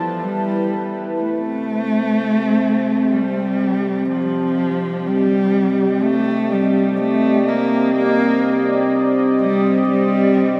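Unsettling and ominous, this dark ambient drone, cut from a longer piece, sets a single bowed cello, close and expressive with vibrato and portamento, over a deep, detuned analog pad whose sawtooth body and sub octave move from Em to Cm at 1.2 seconds. Both parts sit up front and play throughout the 10.6 seconds, the pad's slow attack and long release thickened by chorus while a diffuse ambient delay trails the cello. A lush hall reverb soaks the dreamy mix.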